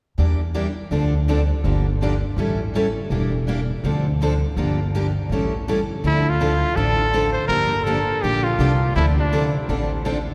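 Acoustic string swing in the jazz manouche style, this short passage cut from a longer piece moves at a brisk 164 BPM in D minor with a swinging, virtuosic mood. Two picked steel-string acoustic guitars carry the accompaniment throughout, one bright and concert-like, the other warm with fresh strings and an auditorium character, both sitting back in the mix. An upright bass, plucked on gut strings, gives a woody, dark and thumpy foundation placed up front. The opening section cycles through Em7b5, Dm7, Gm7 and A7, and when the second section begins at 6.0 seconds the harmony settles into longer stretches of Dm7 and Gm7. A clear trumpet enters at 6.1 seconds with a forceful, punchy jazz solo, shaded by light vibrato and scooped notes. A drenched cathedral reverb with a long 5.8-second tail surrounds the ensemble, giving the recording the spacious sound of a church or concert hall.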